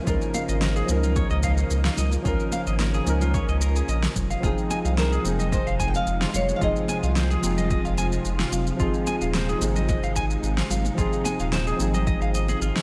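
A straight 4/4 groove at 110 BPM, built on a punchy overdriven electronic kick, a fat overdriven snare with shaker and very quiet, high-tuned acoustic congas, carries this blissful sunset chillout excerpt in Ab major, where a deep, round analog bass with tube saturation sits up front under mellow, chorused electric-piano-like synth keys, silky vintage string-machine chords in the background and clean picked electric guitar arpeggios with spring reverb and delay, while the harmony moves from Db69 to Fm7 to Ab6 in a light reverb and a fingerpicked flamenco guitar melody with delay appears from 4.4 to 7.7 seconds over the Fm7 chord.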